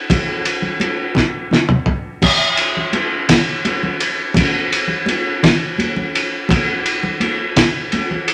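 A cloth-damped, thuddy drum kit and a set of congas start together at 0.1 seconds in this short rock cut from a longer piece, moving at 56 BPM in dotted quarters with a straight 6/8 feel. The kit sits up front with a muffled, lo-fi character: a fat snare, a tight kick, dark cymbals and a gritty, saturated edge with a rolled-off top, with toms, crash and ride rounding it out. A drum fill arrives between 1.2 and 2.2 seconds. The congas ride lower in the balance, high-tuned and thin-skinned, with a bright, damped tone that stays close and dry against the kit. A moderate club reverb frames the whole, and the mood is hypnotic and trippy.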